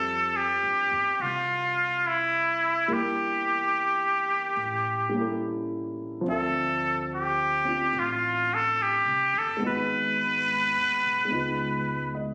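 A trumpet with a straight mute carries the melody up front, its nasal, raspy tone colored by light vibrato and scooped notes in a tender, intimate jazz ballad at 71 BPM with a swung feel in F major, tuned to A4 = 444 Hz. Beneath it, a dark, mellow grand piano with audible action noise plays accompaniment through changes from Fmaj9 to Dm7 and on to Db9, while a woody, growly pizzicato upright bass sits low in the mix. The phone recording of the room carries a touch of light reverb, and this fragment of a longer piece lasts about 12 seconds.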